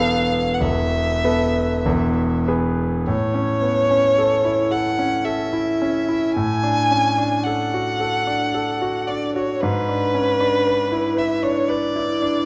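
A rich, vibrato-laden violin sings a tender, lyrical melody over a brilliant concert grand piano with deep bass from the very start of this slow, rubato romantic classical duo in 3/4 and A major at 47-58 BPM, both instruments up front in a dark-toned production with wet recital hall reverb, the harmony resolving from a suspended E chord to E at 1.9 s and arriving on A at 3.1 s before moving through D over A and E7 over G# in this passage cut from a longer piece.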